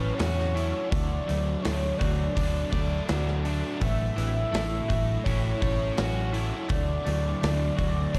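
A dark, studio-room production gives this short cut from a longer piece a blissful, dreamy haze, sitting at 83 BPM in a straight 4/4 in A major as it moves between A6 and D chords. Up front, a round, punchy, foam-muted vintage electric bass anchors the low end, and a big acoustic rock kit joins at 0.2 s with a boomy kick, medium-tuned snare and hi-hat. A thick fuzz guitar plays a riff in the background through distortion and ensemble chorus, while an overdriven semi-hollow guitar carries another riff with a hollow-body character and reverse reverb. Further back, a bright, twangy, direct-recorded clean electric guitar picks compressed arpeggios soaked in lush chorus and digital delay. Above it all, a mellow horn-like synth lead sings a sustained melody with a soft attack, its vintage sawtooth tone warbling with vibrato, chorus, delay and a filter sweep.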